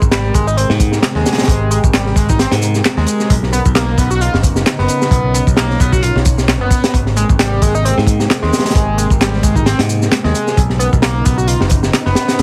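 A heavily compressed, radio-like sound with light reverb frames this funky, energetic breakbeat excerpt, cut from a longer piece and running at 132 BPM in 4/4 with a 55% swing on the 16ths. Up front, a crunchy breakbeat kit from a small room sets a dark, saturated groove, with a punchy kick, a high-tuned snare and hi-hat, its top end rolled off. An overdriven electronic shaker and handclaps add analog grit beneath it, while a bright picked electric bass growls directly between F#1 and Ab2. From 0.1 seconds a screaming, guitar-like synth lead plays a riff built on sawtooth and pulse waves, with vibrato, tube saturation, lush chorus and dub echo. In the background, a thick, warbling unison pad with sidechain pumping holds slow-attack chords that alternate between Abmaj9 and Bmaj9.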